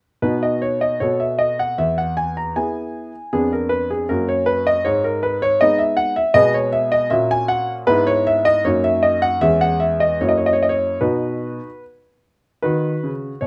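Classical-period piano sonatina in B major, elegant and cheerful, moving at 78 BPM in 2/4 with a flexible rubato feel and tuned slightly low to A4 = 436 Hz. A solo concert grand, clear and up front with a deep bass and short sustain, plays from 0.2 to 13.5 seconds across a range from E2 to A#5. Its harmony passes through a diminished chord and a descending chain of inverted chords before reaching F#7 and resolving home to B at 11.0 seconds, all set in light reverb in this fragment cut from a longer piece.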